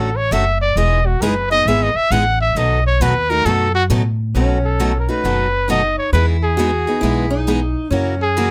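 A jaunty trumpet solo opens this playful, lively excerpt of acoustic string swing (jazz manouche), played up front with a light vibrato in jazz style over a swung 4/4 at 134 BPM in E major. Beneath it, two picked steel-string acoustic guitars carry the accompaniment: one a bright concert guitar, the other a boxy parlour instrument sitting a little lower in the mix. A pizzicato upright bass with gut strings anchors the low end, close and thumpy with a woody tone. At 4.3 seconds, as the music moves into a new section, a third picked guitar enters in the background with a second line, its fresh strings adding sparkle. The harmony moves through Dmaj7, Emaj7, B7 and F#7, and the close, detailed microphones with little reverb give the group an intimate, immediate sound.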